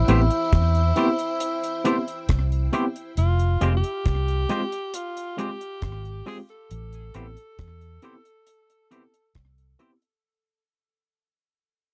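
A straight 4/4 pulse at 68 BPM comes from a deep, dry reggae drum kit, with a tight kick, hi-hat and rim click sitting up front, in this sweet, smooth lovers rock excerpt cut from a longer piece. Beneath it, a vintage muted fingered electric bass gives a dark, round, foam-muted tone in the low register, the loudest part of the mix. An overdriven tine electric piano adds barky, gritty accompaniment through a combo amp with fast tremolo, while a twangy electric guitar plays bright, clean, compressed stabs dressed in lush chorus. A tenor saxophone carries the melody with a soft attack, light vibrato and tape echo in a jazz-style solo voice, and a sawtooth string machine with a slow attack and ensemble chorus supplies a full, sustained second line that stops at 3.1 seconds. The harmony moves from Am7 to Fmadd9 at 3.2 seconds and back to Am7 at 6.7 seconds, all within a close, dry 1970s-style studio sound that fades out across its length.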